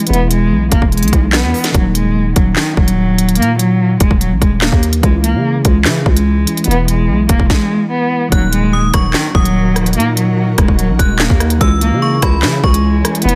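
Menacing and ominous, this half-time drill fragment sets a dark, bowed solo cello with vibrato and portamento up front over a worn, slightly out-of-tune electric piano, a growling 808-style bass and a drum kit with a hard-clipped kick, sharp snare, crisp hats, rim clicks and handclaps, breaking into a brief stop at 7.5 seconds before an inharmonic, ringing FM bell enters at 8.3 seconds and an ethereal, airy pad drifts in behind at 9.4 seconds, all in a dense, heavily limited mix with little reverb.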